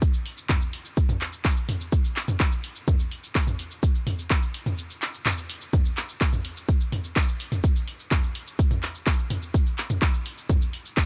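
A punchy electronic kick drum and a layered deep house kit of handclaps, hi-hat, shaker and toms open this short techno cut at once, both placed up front in a dry mix, the kit carrying the close feel of a small room. The groove is straight in 4/4, melancholic and hypnotic, moving through a brief break between 4.8 and 5.7 seconds before the two drum parts carry on to the end at 11.1 seconds.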